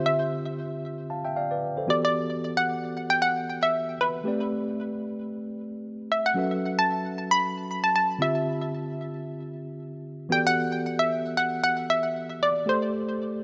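A hollow, bouncy square-wave pluck carries the melody up front between B4 and B5, its detuned, ring-modulated tone touched with a noise layer, a filter sweep, chorus and digital delay, each note striking fast and then decaying. Beneath it, a worn, slightly out-of-tune tine electric piano plays mellow, clean accompaniment from D3 to A5, sitting direct and close but lower in level than the lead. This deep, hypnotic amapiano piece, cut from a longer track, moves at 114 BPM in 4/4 with a 55% swing on the sixteenths. Both parts play throughout the 13.4-second passage, framed by light reverb. The harmony cycles through minor-eleventh chords, Dm11, Em11 and Am11, with a turn to F#m7 before returning and settling on Am7.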